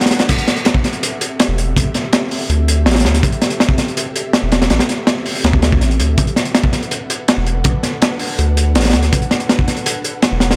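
This is a dry, gritty recording with a small-room ambience, cut from a longer drum and bass piece in a dark, raw jungle vein at 163 BPM in straight 4/4, set in A dorian. A crunchy acoustic breakbeat kit opens the clip at 0.0 seconds, sitting up front with a punchy kick, a high-tuned snare, hi-hat and a crash with dark cymbals. Its saturated, warm tone has a rolled-off top, and the drums sound smooth and dark. At 0.3 seconds the drop arrives as a saturated sub bass joins, a deep, thick sine tone with a fast attack and sustained notes ranging from E1 to D2. Together the two parts carry the drop through to the end at 10.6 seconds.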